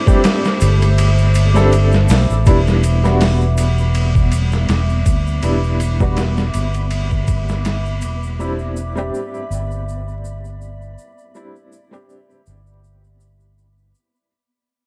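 Trip hop at 81 BPM, dark and brooding, with a gently swung 16th feel, this excerpt from a longer piece rests on a felt-muted upright piano with tremolo and tape echo, audible action noise and short sustain, under a warbling, nostalgic pad with 12-bit sampler grit and a flickering, granular texture in the background, all over a bed of vinyl crackle. A gritty, overdriven sampler-style drum kit with a thumpy kick and a faint egg shaker carry the groove, and a bright, growly fingered electric bass sits up front. The kick drops out from 1.0 to 2.5 seconds, the piece fades from 2.5 seconds as the chords move from Cadd9 to Em7, and the drums stop at 8.2 seconds.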